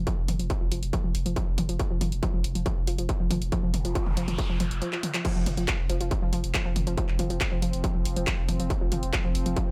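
A straight pulse drives this intense peak-time techno excerpt, where a distorted, up-front kick and a punchy, tape-tinged analog drum machine with hi-hats, handclaps, toms and crash cymbal sit beneath a thick, overdriven sub bass and a warbly, dusty lo-fi pluck riff with chorus and delay under a filter sweep, until a noise sweep and drum fill build to the drop at 5.2 seconds and a deep, moody pad drone slips into the background at 6.0 seconds.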